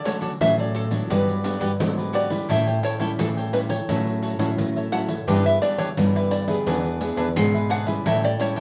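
Joyful and lively, this short cut from a longer samba and choro piece moves at 86 BPM in a straight 4/4, with a twangy, plunky open-back banjo fingerpicking the melody over a mellow, crisp picked cavaquinho and a fingerpicked nylon-string guitar with a classical tone. A second nylon-string guitar carries the bass line from 0.4 seconds, while a jingly pandeiro played with hard hands enters at 0.1 seconds and sits distant in a large room. The parts move through Dmaj7, Gmaj7, A7, F#m7/A, G6 and E7 before returning to A7, all in moderate studio reverb and tuned to A4 = 442 Hz.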